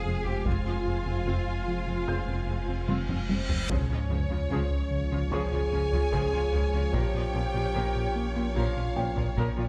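Relentless and brooding, this hybrid orchestral and electronic film cue moves in a straight 4/4 over a dark progression from F minor through D-flat to B-flat minor. From the first moment, a saturated, thick sub bass and a round analog bass riff sit beneath bowed cello and very quiet double bass sections, while a detuned, chorused analog pad, a mellow, roomy French horn section and a distant, focused symphonic violin line fill the middle. A felt-muted upright piano adds boxy, intimate texture with tape echo and audible action noise, and a soft-attack viola section plays in the background. Hard-stick taiko enters at 0.5 seconds, and a reverse cymbal and drum fill build toward an impact at 3.7 seconds. There a close, expressive studio violin section takes the melody with vibrato and portamento, joined by a clear, vintage-toned trombone section holding quiet chords. Close, detailed microphones and light reverb keep the dense layers distinct in this excerpt from a longer piece.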